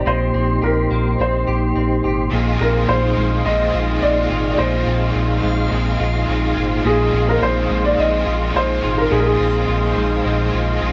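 A straight 4/4 pulse at 106 BPM carries this ethereal, blissful dream pop excerpt, cut from a longer piece, where a felt-muted upright piano sings a soft, intimate melody through tape echo over mellow, flute-like tonewheel organ chords with key click and chorus vibrato, clean picked electric guitar arpeggios washed in ensemble chorus, and a deep, sine-like sub bass with octave sitting up front. At 2.3 s the harmony moves from Cm7 to Fm7 as a bright, overdriven electric guitar joins with tremolo, and at 3.2 s a very quiet reversed, granular swelling texture drifts in until 9.6 s. The mix sits in a moderate studio reverb and carries the worn, warbling pitch drift of old cassette tape, its top end cut off above 8.0 kHz.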